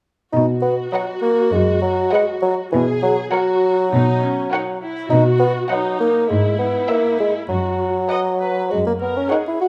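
Playful and quirky, this whimsical cinematic film cue opens at 0.3 seconds with a mellow, close-miked solo bassoon and an up-front cello section carrying the bass, while a focused viola section with vibrato fills in the accompaniment. From 0.9 seconds a rich chamber violin section sings the bowed melody with a smooth top, shadowed in the background by a dark, lush symphonic violin section playing a soft-attacked, expressive second line. The strings and bassoon sit in a moderate recital hall reverb, and the cello section stops at 9.2 seconds just before this excerpt of a longer piece ends.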